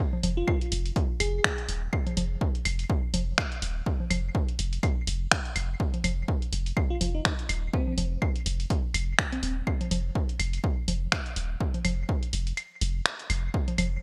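Bright 1980s-style digital ambience frames this clinical, hypnotic minimal techno cut from a longer piece, moving at 124 BPM in 4/4 with a 16th-note swing in F minor. An up-front electronic kick and a punchy analog drum machine of finger snaps and hi-hat, bathed in gated reverb, drive the groove alongside delayed congas and claves and a deep sine sub bass with a pitch-drop attack and sidechain pumping between Eb1 and F1. A bell-like, sparkling FM electric piano with chorus, phaser and delay surfaces briefly, returning at 6.9 seconds, and the kick drops out at 12.6 seconds before coming back at 13.5.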